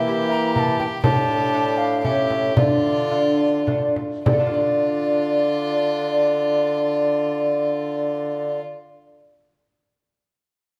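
A courtly, solemn renaissance-style consort dance in 3/4 and D minor, at roughly 100-125 BPM, opens with a nasal, gut-string violin melody over a mellow, hollow tenor recorder second line with airy chiff, a clear trombone, a delicate fingerpicked lute with doubled gut strings in the background and a dark, smooth-topped bassoon bass, while a small, bright frame drum played with soft hands sounds from 0.6 to 4.5 seconds as the tempo slows through the opening phrase, the ensemble framed by a recital-hall reverb.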